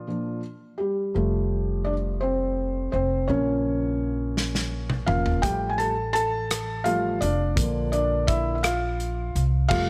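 A felt-muted upright piano opens this tender, romantic six-eight pop ballad alone, its mellow, intimate tone carrying audible action noise and a vintage character at a slow 56 BPM, tuned to A4 = 443 Hz. A woody, thumpy pizzicato upright bass joins at 1.2 seconds, and a natural country drum kit of toms, snare, rim click, hi-hat, punchy kick and dark-sounding crash arrives at 4.4 seconds with a fill. The harmony moves from Bb through Fadd9, Bbm and Fadd9/A before returning to Bb, with all three parts sitting up front in light reverb and small room ambience in this excerpt cut from a longer piece.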